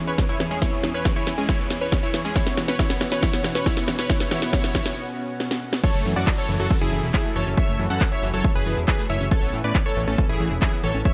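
A straight 4/4 pulse from a punchy, up-front electronic kick and a techno kit of cracking snare, handclaps, smooth pumping hats and crash drives this bittersweet uplifting trance clip, where a build-up of drum fills and a very quiet riser and downlifter breaks into a drop at 5.8 s, with a thick, wave-folded analog bass entering at 5.9 s beneath a sidechained, low-pass-filtered supersaw stab melody with tape echo, a bright phased pluck arpeggio in the background, and a lush, airy, chorused unison pad, all set in light reverb.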